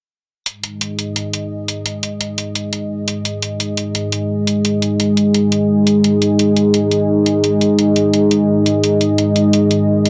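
Half-time drum and bass at 172 BPM in 4/4 with a swung sixteenth feel, this dark, heavy excerpt pairs a deep, detuned sawtooth analog pad with a sub octave and chorus, sustaining slow-blooming chords up front from 0.5 to 10.1 seconds, against bright, layered electronic hi-hats re-recorded in a small room, all set in light reverb with a dark, warm production.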